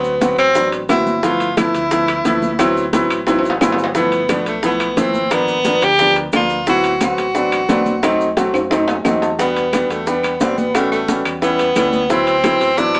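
Heard through a small-speaker sound with a wet studio reverb, as if the band were playing live in one room, this sophisticated, danceable Afro-Cuban jazz clip at 177 BPM in D mixolydian puts a bright, breathy tenor saxophone solo up front with vibrato and scooped notes, beside an intimate, warm grand piano with audible action noise that adds a fill at 8.7 seconds, over a dark, round, amped electric bass and a background bed of thick-skinned congas, very quiet tight bongos, ringing, saturated metal-shell timbales, woody claves and grainy maracas, with drum fills at 3.3 and 8.5 seconds as chords such as D13, G#dim7 and B7b9 pass by.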